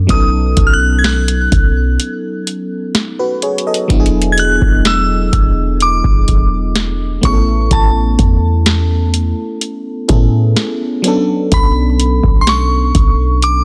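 Smooth and romantic, this slow contemporary R&B passage at 63 BPM in 4/4 is cut from a longer piece, tuned to A4 = 444 Hz, and moves through B9, E7, Amaj7 and Bm9, with a break from 2.0 to 3.9 seconds. An FM electric piano with a bell-like attack and a faint noise layer supplies chorused chords, a deep, sine-based 808-style bass booms underneath, and a crystalline synth bell carries the high melody through chorus and tape echo. The dry analog drum machine sits up front with its deep kick, tonal snare and metallic hats, and the dense, heavily limited modern master has little reverb.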